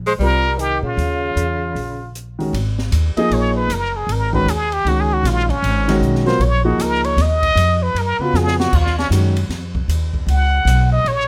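Modal jazz with a searching, spiritual mood, this short excerpt from a longer piece swings at a lively pace in four. A woody, thumpy pizzicato upright bass sits up front from the first moment, joined almost at once by a small-room acoustic kit with dark cymbals, a high-tuned snare and a boomy kick, while a natural-sounding grand piano comps beneath until about 9.3 seconds. Over the opening bars a bright tenor saxophone with a soft attack and vibrato adds a brief second line that falls away by 2.1 seconds. From 2.5 seconds the plunger-muted trumpet takes the solo, brilliant and forceful with wah-wah colour, vibrato and a punchy, close-miked presence set in plate reverb. A short drum fill around 8.3 seconds punctuates the solo, and the whole recording feels close and detailed, with little room sound.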